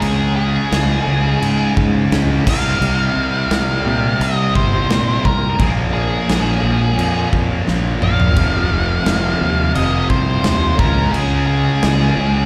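Quiet-loud alternative rock at 86 BPM, brooding and angsty, this excerpt sets a dark octave-fuzz lead guitar melody over two distorted, picked fuzz guitar riffs tucked in the background, a growly overdriven fingered bass up front, a big rock drum kit with a punchy kick, bright cymbals and a fill from 7.7 to 8.4 seconds, and a lush, very quiet bowed string section holding sustained chords, all heard like a live gig through a venue's PA with recital hall reverb as the chords move from Db through Cm, Bbm and Fsus2 back to Db.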